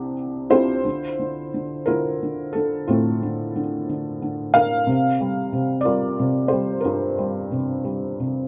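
Melancholic and reflective, this short passage, cut from a longer classical piece, features a lone felt-muted upright piano playing lyrically in 6/8 with free, rubato timing. The piano sits up front with a soft, intimate tone, its hammer-and-key action noise clearly audible under a touch of light reverb. Its range runs from deep bass to the upper middle register, and the harmony settles on a Dm9 chord before shifting to C7sus4 at 4.9 seconds.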